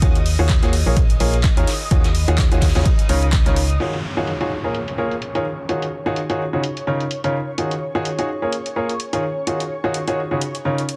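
A dense, heavily limited modern mix with light reverb and small-room ambience carries this energetic, soulful piano house passage, cut from a longer piece. An intimate, up-front baby grand piano, with audible action noise and a long sustain, plays the riff through a digital delay over a silky, chorused analog string pad in the background. A punchy, overdriven analog drum machine with crash cymbal, handclaps and hi-hat runs throughout, while a hollow, organ-like FM bass, a tape-toned electronic kick and a vintage brush kit with dark ride and snare fill only the opening seconds, until an electronic downlifter enters at 3.8 seconds and lasts to 7.6 seconds, with sidechain pumping on the bass, piano and pad.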